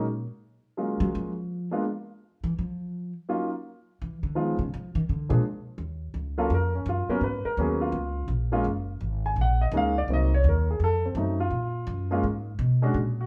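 A bright pizzicato upright bass with steel strings sits up front and solos until 5.8 seconds, when the warm, woody upright piano takes its own solo over chords like Ebm9 and F7b9, giving this swung, moody, late-night jazz piano trio passage a live, one-room feel bathed in moderate large-studio reverb.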